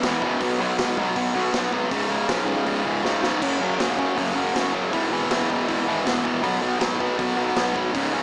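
This upbeat, rebellious punk rock clip, cut from a longer piece, drives along at 159 BPM in a straight 4/4 and lasts just over eight seconds. A double-tracked, compressed distorted electric guitar sits up front with a bright, picked riff as the chords move through Cb5, Db5, Gb5, E and back to Cb5. Beneath it, a fuzz-soaked electric bass growls in the background with an overdriven edge. The raw garage drum kit brings crash cymbal, hi-hat, boomy kick and a medium-tuned snare, with a gritty, saturated character, a rolled-off top and a pumping stone-room ambience, plus a quick fill from 3.0 to 3.4 seconds. Light reverb and a small-speaker quality give the whole clip a scrappy, lo-fi punch.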